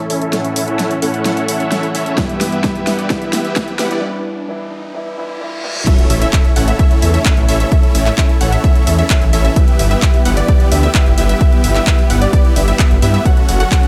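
Huge, bright supersaw chords carry the riff through this anthemic, emotional festival progressive house piece at 130 BPM, building under a filter sweep alongside a dark, mellow piano, intimate bowed strings and overdriven big-room drums with a huge snare and fills, joined by a punchy, up-front kick at 2.2 s, before a background riser and reverse cymbal lead into the drop at 5.9 s, where an impact lands, lush unison pluck arpeggios enter and a thick, menacing detuned saw bass pumps beneath the sidechained synths and strings.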